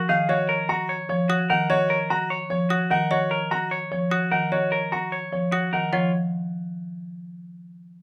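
Bright and propulsive, this short passage of minimalist classical pattern music runs at 298 eighth-note beats per minute in a straight 7/8. A clean, picked semi-hollow electric guitar sits up front with compressed arpeggios, joined from the start by a dry trough xylophone whose rubber-mallet arpeggios tick along in the background. At 0.1 seconds a warm, boxy grand piano enters with the melody in its upper-middle register, while a marimba struck with hard mallets adds a low, percussive accompaniment, its rosewood bars sounding vintage and band-limited, also placed up front. The harmony rests on D#madd9 before shifting to an F#5 chord as a second section arrives at 5.9 seconds. Close, detailed microphones and a light reverb keep the sound crisp and intimate in this fragment cut from a longer piece.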